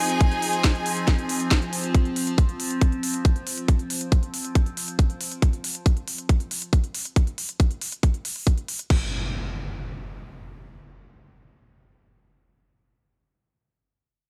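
A dry, close-sounding mix opens this hypnotic psychedelic trance fragment in F minor at 138 BPM, where a bright, morphing unison wavetable pad holds slow-attack chords through phaser, its own reverb and sidechain pumping, joined only until 1.9 seconds by a lush, bowed string ensemble with focused vibrato. A tight, tape-warm electronic kick sits up front beneath a layered kit of cracking snare, crisp hi-hats and crash cymbal, carrying on in straight 4/4 after the pad ends at 5.5 seconds. At 8.9 seconds an upfront electronic impact marks the shift into the next section as the drums stop.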